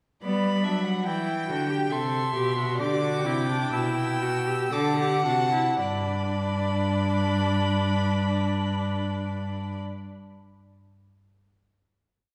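From 0.2 seconds a string quartet plays a stately yet lively baroque-style fugue in 3/4: a focused, distant first violin with vibrato carries the melody, a smooth second violin holds the second line, a clear viola supplies accompaniment, and an up-front cello with light vibrato anchors the bass, each bowed line woven in imitative counterpoint, arriving at a final chord at 5.8 seconds while the music keeps slowing down until 7.5 seconds, all heard from further back in a reverberant concert hall.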